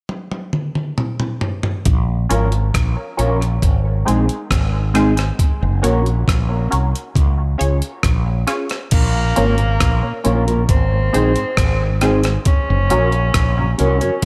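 Hypnotic and meditative, this dub reggae passage, cut from a longer piece, moves at a slow 68 BPM in Bb minor. A gritty, compressed breakbeat kit with a thumpy kick opens with a fill, and at 1.9 seconds a round, punchy fretless bass settles in up front over a Bbm, Ab, Gb, Db cycle. A clean, dark electric guitar with spring reverb and dub echo and nasal filtered chord stabs treated with phaser and echo in the background fill out the sound, while a very quiet, lightly overdriven tonewheel organ on slow rotary makes a brief appearance. At 8.9 seconds a breathy, whispered tenor saxophone with scooped notes and dub echo enters as a soft second line, and the organ returns shortly after.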